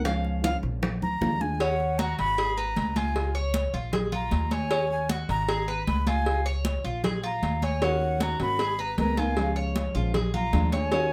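Opening with the metallic, double-strung Cuban tres picking arpeggios in a brief solo over thumb-plucked nylon-string guitar, dark pizzicato upright bass up front, bright hard-hand congas, and round low-tuned bongos and cowbell, this nostalgic, sultry Cuban son and guajira excerpt in Eb minor at 155 BPM brings in an airy silver concert flute melody with chiff and unsteady vibrato at 1.0 seconds, while the full-bodied guitar drops out at 1.6 seconds and returns at 7.8 seconds over a cycling Ebm7 to Abmadd9 progression in moderate studio reverb.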